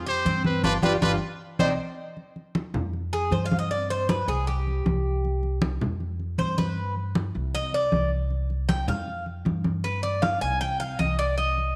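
Riding a straight four-beat Cuban son groove with ringing, medium-tuned congas and a woody, thumpy pizzicato upright bass, this sultry guajira excerpt opens with a bright, up-front trumpet phrase with light vibrato that ends at 1.7 s amid a band accent, before the metallic, double-strung Cuban tres, picked in arpeggios throughout, takes a solo from 2.2 s over shifting suspended and minor chords, all set in a small room with moderate echo-chamber reverb.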